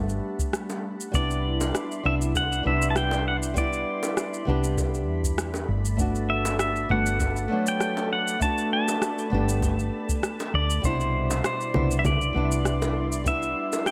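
A relaxed 99 BPM groove in 4/4 with a gentle 16th-note swing sets this sunset chillout excerpt in C lydian. A deep, analog-flavoured electronic kick and a produced blend of electronic shaker, rim click and congas carry the beat, while tight, high-tuned bongos sit distant in the background. A dark, round, punchy fretless bass with a woody, hollow-body character stays up front in a low register. Underneath, a small fingerpicked nylon-string guitar with delay plays accompaniment, and a lush, detuned unison pad with chorus and a slow attack holds thick, warbling chords drifting between Gmaj9 and Cmaj9. From 1.2 seconds a clean, compressed pedal steel with delay takes the melody up front, its slide and volume swells giving the blissful mood a glowing, airy lift inside light digital reverb.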